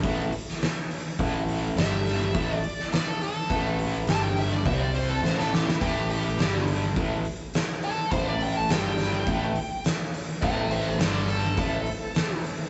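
A straight 4/4 groove at 104 BPM in A minor drives this brooding, gritty slice of blues rock power trio and southern rock, cut from a longer piece, with an oversized low-tuned drum kit pounding out fat snare, boomy kick and dark cymbals in a pumping stone room, including a fill at 5.2 seconds. A double-tracked, overdriven electric guitar riff with harmonic tremolo sits up front beside a growling, overdriven picked bass, while a dark, smooth lead guitar soaked in wah and overdrive takes the solo from 1.8 seconds. A very quiet, thick tonewheel organ with slow rotary speaker slips in with sustained chords at 10.4 seconds, all captured as a rough, tube-saturated rehearsal-room recording with a dull, rolled-off top.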